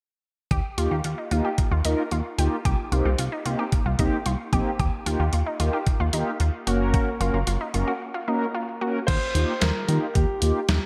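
At 0.5 seconds a detuned 8-bit drum machine, a chorused synth bass and an analog pluck start together in a bright, wistful synth-pop groove at 112 BPM in straight 4/4, in Eb major. The drums sound sampler-style and tape-warm, with a thumpy kick, medium-tuned snare, hi-hat and crash sitting up front under gated reverb. The bass is glossy and nasal, a retro pulse-and-sawtooth tone with filter pluck and chorus. The pluck spins wave-folded arpeggios through chorus and digital delay, while mellow synth brass, round and detuned with ring modulation and a filter sweep, fills in the chords alongside. The harmony moves through Ebadd9, Cm7 and Gb, a break arrives at 8.0 seconds, and at 9.1 seconds a dark baby grand piano takes a short, long-sustaining melody with digital delay as the chords return to Ebadd9. A moderate plate reverb and bright 1980s-style digital sheen frame this passage, which is cut from a longer piece.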